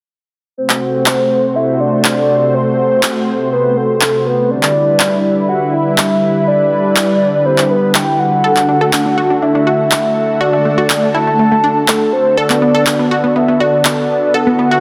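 Dreamy and expansive, this progressive house excerpt floats a soft, round, octave-layered synth melody with chorus, phaser and dub echo over a thick, detuned unison pad of sustained chords, driven by overdriven electronic handclaps up front, while a bright, punchy unison pluck adds echoing arpeggios from 8.4 seconds, all set in a moderate hall reverb under a dense, heavily limited master as the harmony moves from F#dim through Em7 and D to Bm7/D.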